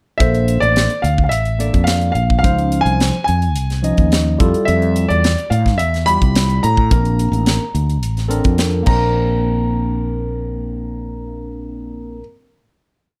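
A clear, intimate grand piano with audible action noise and slapback echo sings a motif-based melody over barky, phased tine electric piano pushing drop-2 chords, a bright, syncopated fretless bass riff and a crisp, punchy drum kit in a funk groove that ends with a fill at 8.9 seconds, giving this short, soaring piece of electric jazz fusion a bright lift within a dark, lightly reverberant production before a final hit at 9.2 seconds.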